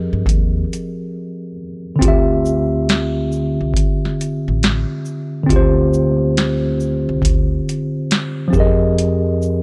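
A worn, slightly out-of-tune electric piano, dulled by cassette tape and a low-pass filter, opens this nostalgic, reflective lo-fi hip hop excerpt at a swung 69 BPM alongside a woody, thumpy pizzicato upright bass, before a booming analog drum machine enters at 0.3 seconds with a deep kick, crisp snare, metallic hi-hats and shaker roughened by overdrive and 12-bit sampler grit; a break falls from 1.1 to 2.0 seconds as the dry, gritty mix moves from Fm11 to Dm11 and back to Fm11 at 8.5 seconds.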